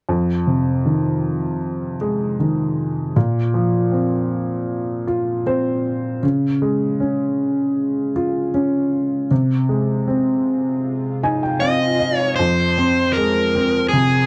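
A pop piece in a longing, emotional mood, cut from a longer work, where a clear, woody upright piano carries the accompaniment up front, its action noise audible, through chords moving from Fm7 to Bbsus2, Db and Ab/C, with fills around 5.1 and 10.8 seconds. A faint electronic swell sounds in the background near 10.7 seconds, and at 11.6 seconds a dark, smooth overdriven electric lead guitar enters with a picked melody, shortly before the harmony settles on Fm at 12.4 seconds. The close, dry 1970s-style studio sound carries only light reverb.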